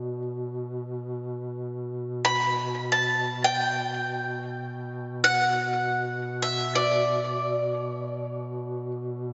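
A bright, picked bowl-back mandolin with doubled strings and analog delay carries the melody up front over a mellow duduk drone on B2, its vibrato and scooped notes smooth on top, in this solemn, longing Caucasian folk lament in free time and B minor, tuned to A4 = 439 Hz, where a dreamy, lush hall reverb with a rolled-off top bathes the fragment until the mandolin stops at 8.9 s and the duduk sustains alone to 9.3 s.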